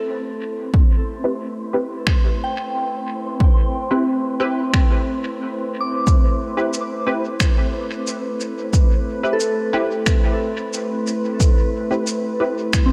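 A light reverb and digital ambience frame this hazy, spacious ambient dub excerpt in A minor, moving at 90 BPM in a straight 4/4 and resting on an Am7 chord. A warbling, nostalgic tape-like pad fades in from the start, holding detuned, lo-fi sustained chords softened by chorus and its own reverb, while a soft, pure FM synth bell traces gentle arpeggios through chorus and tape echo. Alongside them, an airy, breathy tuned noise texture hangs on a single note like a passing wind. An overdriven, punchy electronic kick arrives up front at 0.7 seconds, and a muted, deep filtered dub chord stab follows at 1.2 seconds, its detuned sawtooth plucks colored by ensemble chorus, cassette tape and dub echo. From 2.1 seconds, pitched-down, muffled electronic finger snaps and cabasa add a compressed, sampler-style patter washed in dub echo.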